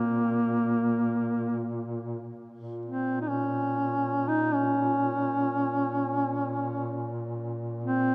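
A mellow duduk sings a mournful, longing Caucasian lament from the very first moment, its vibrato-laden, scooped notes sitting up front over a warm duduk drone held low beneath it for the whole 8.1 seconds. Both reeds are played in a smooth-topped folk style and move in free time, steeped in the long, wet wash of a cathedral reverb. This short fragment, cut from a longer piece, stays in a single unbroken section of quiet grief.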